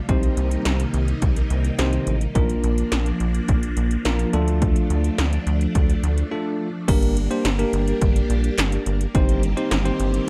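A rubbery, bouncy square bass drives this nocturnal synth-pop excerpt in G minor at 106 BPM, together with punchy 80s electronic pad drums with a gated snare and metallic hats, a bell-like tine electric piano, and a swirling phased string machine with ensemble chorus, over chords of Cm7, Bb and Dm, with a brief break at 6.3 s before the harmony turns to Gm in a dry, dark mix.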